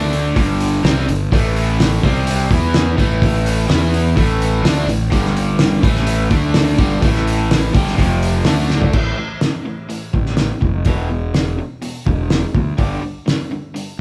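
A cloth-damped, thuddy drum kit sits up front in this driving, swaggering classic rock excerpt at 126 BPM in A minor, its fat snare, tight kick and dark, muffled cymbals sounding saturated and lo-fi, with a drum fill at 8.7 seconds. A round, fuzzy fingered bass, dark and overdriven, sits beneath two picked overdriven guitars: a bright, crunchy one riffing throughout, and a hollow-body semi-hollow one with phaser tucked in the background until 8.9 seconds. The band plays live in one room with light reverb, moving through power chords such as A5, G5, E5 and D5 in a straight 4/4.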